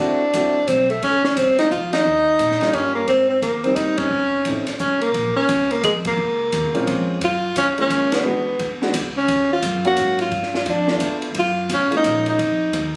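Small-group swing and bop jazz in a smoky, swinging 3/4 at 174 BPM in Bb minor, heard as a short cut from a longer piece. A breathy, mellow tenor saxophone sits up front with light vibrato and scooped notes. It is backed by a woody upright piano that drops out between 4.7 and 6.7 seconds, a thumpy pizzicato upright bass, and a compact cocktail kit with a high-tuned snare, punchy kick, hi-hat and ride, while the band hits accents roughly every two seconds through the first eight seconds. The phone-in-the-room sound carries light studio reverb and compression, and the harmony moves through rich ninth and major-seventh chords before arriving on an F7 at the close.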